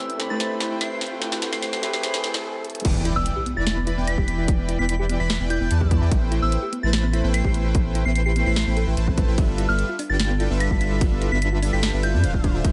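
A soft, pure FM synth bell melody with tape echo opens this lush, bittersweet half-time future bass excerpt together with a barky tine electric piano, a smooth detuned supersaw riff under a filter sweep, a background riser and a trap kit fill with sharp snare and bright hats; after a brief stop, the drop lands at 2.8 seconds with an impact, a hard-clipped kick and a thick saturated sine sub bass up front, while a round thumb-piano-like pluck arpeggiates in the background and the sidechained synths pump through Am9, Em7 and G13 harmony in light digital ambience.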